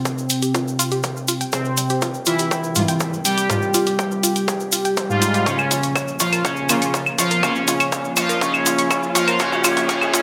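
A juicy, resonant polysynth melody rides up front over a deep, moody analog pad, soon joined by round, wave-folded analog pluck arpeggios under a filter sweep, a distorted electronic kick, a techno kit of claves, congas, warm hi-hats and toms, and a grainy cabasa, all building in this hypnotic, driving 122 BPM melodic techno excerpt from Fmadd9 to Bbm, as fat, warbling analog synth brass stabs appear from 2.8 to 7.5 seconds and a very quiet riser enters at 7.0 seconds, with the synths pumping to the sidechain inside a lush hall reverb and a bright 1980s-style digital sheen.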